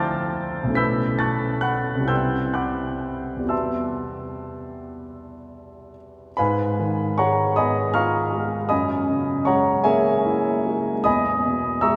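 In a rubato 6/8 lilt, this wistful, hazy impressionist solo piano fragment from a longer piece lets an intimate concert grand with deep bass, long sustain and audible action noise drift through extended chords such as Dm9, Cmaj7 and Emadd9 inside a wet cathedral reverb, then shift at 6.4 seconds to a new passage that moves through G#m6 and F#9 before settling on Emaj7.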